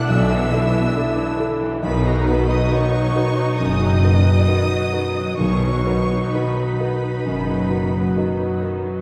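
A clear, present baby grand piano anchors this moving, hopeful cinematic film-score fragment in B major, heard from further back in a reverberant concert hall at a rubato 63-71 BPM, as a rich violin section sings the high melody over a softer, background second violin line, lush violas, a ringing fingerpicked harp, smooth cellos and double basses until about 8.0 seconds, and a very quiet touch of hard-mallet timpani from 5.4 to 6.8 seconds.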